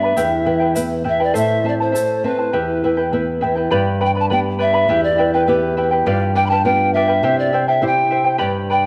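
This is an Andean folk piece for an Andean ensemble, earthy and wistful, moving at 102 BPM in a straight 2/4 in E minor, cut from a longer work. A polished pan flute carries the melody throughout, its woody, pure tone marked by vibrato, tongued attacks with an audible chiff, and lifted highs. Beneath it, a fingerpicked charango with doubled, partly octave-doubled strings adds a shimmering layer, while a fingerpicked flamenco guitar anchors the lower register, both sitting up front in the mix. A grainy, close egg shaker appears only briefly, from 0.2 to 2.1 seconds. The harmony moves between Em and Am before shifting at 3.7 seconds into a passage built on G, Em, G7 and C, all framed by a moderate scoring-stage reverb and a dark, warm production.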